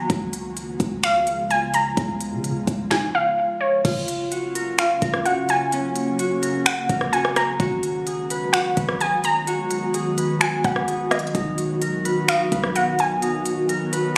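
Blissful and dreamy, this atmospheric cloud-rap excerpt drifts in half-time as a warbly, lo-fi pluck carries the melody through chorus and digital delay over an ethereal pad with sidechain pumping, a deep, boomy 808-style bass and a crisp trap kit with knocking kick, sharp snare and finger snaps, while a ringing, fingerpicked Celtic harp enters with delayed arpeggios at 3.8 seconds, all heard through a light reverb with a phone-in-the-room character.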